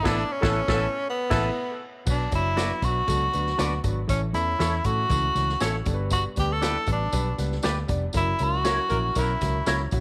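An up-front, bright tenor saxophone with vibrato and scooped notes carries the melody from the first moment, its tape echo trailing over a very quiet horn section and an intimate concert grand piano with audible action noise in this joyful, uptempo 1960s-style soul excerpt at 118 BPM. A twangy, compressed clean electric guitar with harmonic tremolo plays stabs, while a dark, foam-muted fingered bass and a swinging big-band drum kit with a punchy kick join the band accents, and the horns return briefly at 8.6 seconds. A jingly, band-limited tambourine enters in the background at 2.1 seconds as the chords move from Bm through A and G to F#7, all in light reverb.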